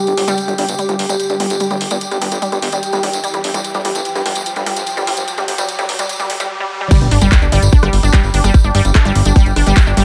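Psychedelic trance with an alien, driving mood, this excerpt opens on a build-up in which a dark, warbling wavetable pad holds sustained chords through phaser and reverb, a bright, wave-folded unison pluck riff echoes through tape delay, and a riser and sub drop sweep toward the peak. Underneath, a fat, saturated analog bass sits up front beside a layered garage drum kit of handclaps, hi-hat, rim click and crash, plus a jingly acoustic tambourine, while both pad and pluck pump against the sidechain. At 6.9 seconds the drop lands with an impact as a tight electronic kick enters up front and drives the groove until 9.8 seconds.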